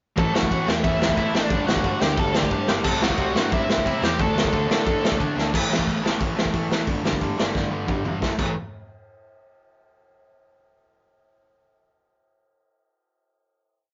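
Upbeat and rebellious, this short punk rock piece charges along at 179 BPM, with a raw garage drum kit up front pounding a two-step groove, dark cymbals and a punchy kick, while an overdriven, double-tracked semi-hollow guitar drives eighth-note power chords over A5, G5, C and D5 alongside a fuzzy, overdriven picked bass tucked in the background. A high-gain lead guitar states a motif-based melody, partly doubled in octaves, until 5.2 seconds. A drum fill at 5.4 seconds leads into the outro, and another from 7.5 to 8.2 seconds carries it to a final chord at 8.2 seconds. The sound is a rough rehearsal-room recording, warm and saturated with a rolled-off top and little reverb.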